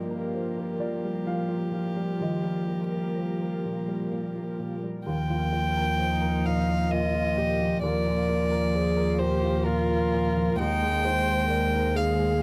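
A floating, pure solo violin carries the melody up front in this tender, intimate neoclassical piece for piano and strings, a rubato 3/4 at 65 BPM in Eb major cut from a longer work, with a soft-bowed sul tasto cello as the second line, a dark, woody viola with vibrato, and, in the background, a slightly detuned upright piano and a breathy, chorused pad, plus a smooth-topped bowed double bass joining at 5.1 seconds, all under light reverb.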